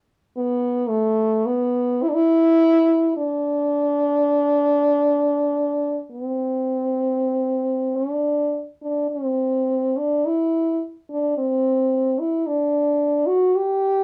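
A lone French horn carries this tender, pastoral Celtic folk passage, entering at 0.4 s with a warm, roomy classical tone and light vibrato that sits up front yet sounds slightly distant. The rubato feel lets the unhurried melody breathe, moving into a second section at 7.9 s before the fragment, cut from a longer piece, closes at 14.0 s. It was recorded live in one room with moderate studio ambience.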